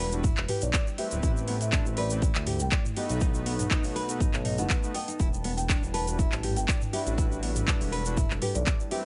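A punchy, layered electronic kick sits up front in this warm, driving afro house cut at 121 BPM in E minor. Around it play an overdriven afro-pop kit with metallic hats, handclaps and toms, a grainy egg shaker, and a nasal, smooth synth bass with sidechain pumping. Fingerpicked nylon-string guitar arpeggios, full-bodied with audible finger squeak, run through digital delay alongside round, chorused synth brass stabs carrying vintage 12-bit sampler grit, while a woody marimba melody enters at 0.5 seconds in the background and a very quiet, moody analog pad holds sustained chords from Em9 through Am7 and B7 back to Em9, all in a digital ambience.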